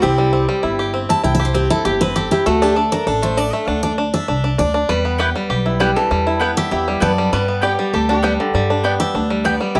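Driving and lonesome, this bluegrass excerpt moves at a brisk 197 BPM in a straight 4/4, cut from a longer piece and running just under ten seconds. A bright, full-bodied jumbo steel-string acoustic guitar takes the solo up front across the whole passage, picked over a progression of C, D5, E minor and G. Beneath it, a twangy, percussive banjo played with fingerpicks rolls out arpeggios, while a woody, thumpy upright bass with gut strings plucks a dark low line. A lap resonator guitar, fingerpicked with a slide, adds a nasal, metallic second line sitting a little further back. At 5.2 seconds a mellow, double-strung mandolin joins with picked stabs that run until 9.5 seconds, all set in a moderate small room ambience.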